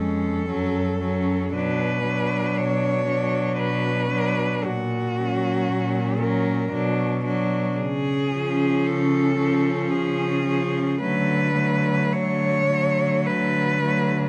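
Four bowed cellos open together in this solemn, elegiac classical passage for cello ensemble, a short cut from a longer piece in F# minor, moving at a slow, rubato 57 BPM in 3/4 with uneven beats. The melody cello sits up front, its rich tone shaped by vibrato and expressive portamento, while a second cello traces a softer-attacked inner line beneath it with the same sliding, vibrato-laden phrasing. A third cello supplies smooth, even accompaniment in the middle register, and a clear-toned bass cello, also up front, anchors the ensemble with steady vibrato until 14.2 seconds. The harmony moves from F# minor through B minor, F#/A# and C# before settling on D6 at 11.0 seconds. Close, detailed microphones and little reverb keep each player's bow sound intimate and immediate.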